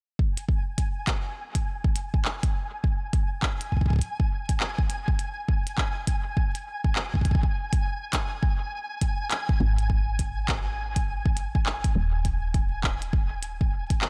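A dry, gritty recording with transformer saturation frames this intricate, cerebral IDM fragment, swung on the sixteenths and cut from a longer piece. An up-front, deep electronic kick and a glitchy kit of handclaps and clicky hats drive it beneath a flickering, granular texture of detuned triangle tones that sustains high in its own reverb. At 9.6 seconds a soft, round, woody FM bass enters with fast-attack, decaying notes, settling under a suspended chord near 12.0 seconds.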